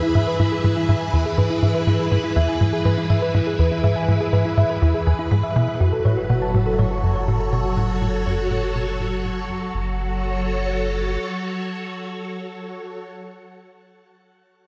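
A straight 4/4 pulse from a punchy, wave-folded sequencer bass riff with delay drives this hypnotic, expansive slice of ambient space music, its filter sweeping before it fades out from 5.8 seconds alongside round, tine-like thumb-piano-style pluck arpeggios steeped in chorus, delay and shimmer reverb, while a swirling, vintage phased string machine holds bright sustained chords up front until 13.1 seconds and a deep, mellow sine sub bass enters at 5.8 seconds, the whole excerpt set in a wet concert hall reverb.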